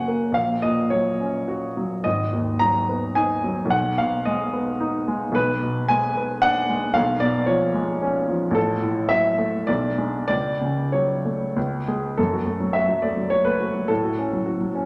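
In a rubato 3/4 that drifts between 92 and 115 BPM, this brooding, stormy romantic character piece for solo piano settles into F# minor from 5.4 s. Cut from a longer work, it spans G#1 to A#5 on a baby grand with a clear, natural, up-front tone and short sustain, set in a wet recital hall with a 1.5 s reverb. The harmony turns through shadowy diminished and seventh chords before a new section begins at 12.2 s on F# minor.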